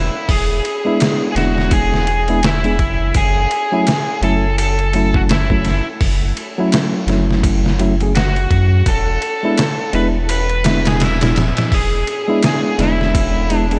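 A lightly reverberant, dark-topped mix frames this smoky, cinematic trip hop excerpt at 84 BPM with a swung 16th feel, where a bright, overdriven slide guitar carries the melody through tape echo over a round, deep sine sub bass, a gritty, pitched-down sampler-style kit with a thumpy kick entering at 0.3 seconds, and a reedy electric piano with harmonic tremolo joining at 0.8 seconds, moving from E7 to F#m7 and back to E7.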